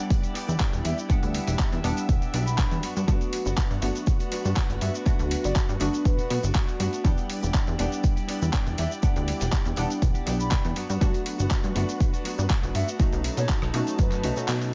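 Filtered disco house with a nostalgic, sensual mood, this excerpt from a longer piece sets a punchy, tape-warm electronic kick up front beneath a gritty sampler-style kit of handclaps, hi-hat, rim click and shaker, a very quiet tambourine, and a plucky, wave-folded analog bass. A detuned, mellow polysynth comp with chorus and phaser carries the harmony over Em7 and Gmaj7, ending on B7. Clean, direct-recorded electric guitar riffs, veiled con sordino strings and a breathy flute melody with dub echo sit further back, all pumping against the kick, in a dry, dark-topped mix where the kick drops out at 14.5 seconds on a band accent.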